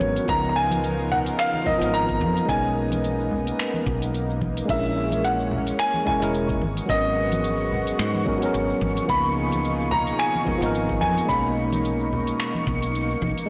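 A present baby grand piano sings a wistful melody over a worn, slightly out-of-tune electric piano, a lush, detuned unison pad with chorus and a round, woody fretless bass, while a knocking electronic kick, thin-skinned congas and a smooth R&B kit of soft-clipped snare, hi-hat, cabasa, finger snaps and crash cymbal set a 109 BPM sunset chillout groove swung on the 16ths, with a sparkling granular shimmer entering at 5.2 seconds, all moving through C#13, Bmaj13, A#m7b5 and G#m11 in a reverberant hall on a blown-out, overdriven recording.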